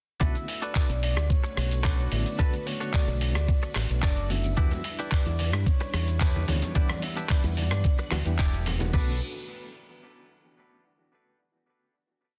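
Nu-disco with a cosmic, sleek mood, driven by a thumpy four-on-the-floor electronic kick and a gritty sampler-style kit of claps, hi-hat, rim clicks, shaker and crash, beneath an up-front, pumping envelope-filtered fingered bass riff, a twangy direct clean guitar playing funk chords, syncopated stabs from a reedy electric piano with tremolo and tape echo, a lush string-machine pad and a round, mellow octave-layered synth lead carrying hook phrases, while distant bongos and congas join at 4.7 s before the piece lands on a final chord at 8.9 s in a dense, heavily limited master.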